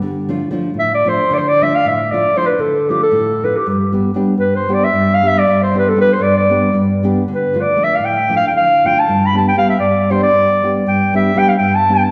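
A thumb-plucked nylon-string guitar opens this short Balkan folk excerpt, and a warm clarinet enters at 0.8 seconds to carry a wild, virtuosic solo in G mixolydian. The tune runs in a lopsided 7/8 at 232 BPM counted in eighths, with a straight feel. The guitar keeps to accompaniment in a classical, acoustic manner, its lines sitting up front as the harmony shifts between Dm and G. The clarinet sings in a classical style, placed up front yet sounding distant and roomy. A wet concert-hall reverb with a long 2.0-second tail gives the whole recording the spacious air of a church or large hall.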